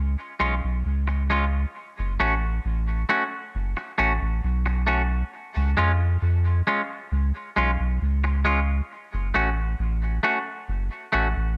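A straight, unhurried 4/4 pulse sets the meditative, deep mood of this dub reggae passage, cut from a longer piece. A soft dub sub bass carries the low end from the very start, its round, sustained tone with a quick attack sitting up front in the mix. At 0.4 seconds a clean, picked semi-hollow electric guitar joins as accompaniment, its compressed, hollow-bodied sound trailed by dub echo. The harmony opens on C# before settling into F#m at 1.7 seconds, then moves to C# and back to F#m. A digital ambience surrounds the pair, lending the sparse arrangement a sense of space until the guitar drops out at 11.3 seconds.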